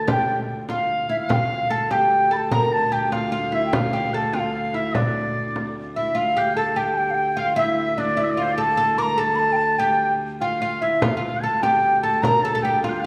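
A driving, ancient-sounding medieval dance in D minor at 99 BPM in 6/8 pairs a hollow, airy wooden flute carrying the tongued, vibrato-laden melody up front with a distant, bright shawm with scooped notes and a woody, plectrum-plucked fretless oud as second lines, all sounding together from the start over a clear, ringing bowed viola da gamba drone on D2, while a small, dry frame drum played with soft hands drops out at 6.1 seconds and returns at 11.0 seconds, all within a wet, roomy reverb in this excerpt cut from a longer piece.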